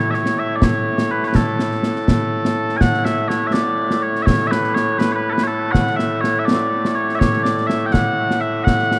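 Proud and ceremonial, this fragment of Scottish traditional pipe music moves at 82 BPM in a straight 6/8 in A major. Sweet, mellow small bagpipes carry a continuous solo melody up front, while a close concert snare drum and concert bass drum, with dark cymbals, enter at 0.1 seconds, all set in a vast, echoing cathedral space.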